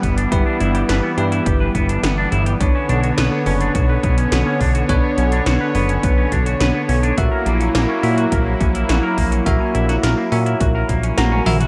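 A straight 4/4 pulse drives this nocturnal, moody synthwave piece, cut from a longer track, with a punchy, overdriven electronic kick running until 11.0 seconds and 80s pad drums supplying metallic hats, a gated snare and toms bathed in gated reverb, closing with a drum fill from 11.3 seconds. Beneath them a fat, detuned sawtooth bass sits up front, its fast attack and filter sweep giving each note a thick, decaying tone. A smooth, warbling analog pad with a slow attack holds sustained chords through chorus and sidechain pumping, moving from G6 to Bmadd9 at 2.6 seconds and on to F#7/A# at 7.2 seconds. A clean, twangy electric guitar picks bright arpeggios through delay, while a bell-like tine electric piano adds stabs, also delayed, from further back. A moderate plate reverb soaks the whole mix in a dreamy haze.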